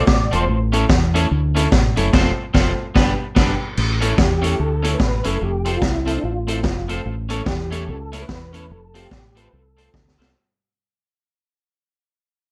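This upbeat, joyful ska excerpt at 146 BPM opens with a brief touch of mellow tonewheel organ, a twangy, slightly broken-up electric guitar with slapback echo, and a worn, woody, slightly detuned upright piano stabbing in the background. Close behind, a round, punchy fingered bass and a small-room street-band kit with boomy kick and high-tuned snare drive the swung groove up front. After a band accent at 2.1 s, the organ returns at 4.2 s with chorus vibrato, slow rotary speaker and slapback echo to carry the melody as the track fades out, closing on a drum fill in a dark, lightly reverberant mix.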